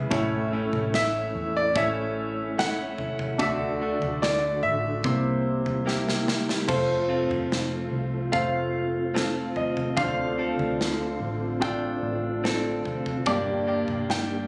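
The clear concert grand piano leads this tender, heartfelt pop ballad excerpt at 73 BPM in A major, carrying both the melody and a deep-bassed accompaniment up front while a soft, flute-like tonewheel organ with chorus vibrato and fast rotary speaker holds chords in the background, a direct-recorded clean electric guitar picks arpeggios, a dark, foam-muted fingered bass adds round punch, and a polished studio drum kit with bright cymbals plays a fill at 5.9 seconds, all in a small room ambience captured as if on a phone.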